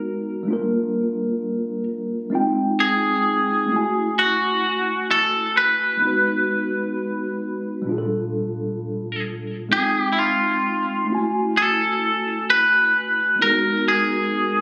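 Moody and late-night, this slow, lightly swung R&B fragment pairs a bright, twangy, compressed electric guitar melody, picked cleanly up front with spring reverb and delay, against mellow tine electric piano chords that sound as if heard through built-in speakers, drifting through minor-seventh changes like Gm7, Fm7 and Abm7 in a small club room captured on a phone.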